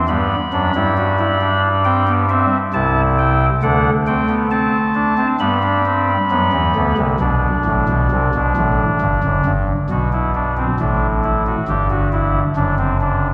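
Classical baroque-style three-part fugue for pipe organ, solemn and contemplative at a measured 67 BPM in 4/4, with a solo chamber organ on a soft reed oboe stop, its chamber voicing touched with chiff, sitting up front while spanning F#1 to B5, tuned to A4 = 435 Hz, and moving from G through C/G and D7 into Bm, Em7 and A5 before closing this 13.3-second cut from a longer piece on D7/F#, all set in a wet church reverb that places the listener further back in the room.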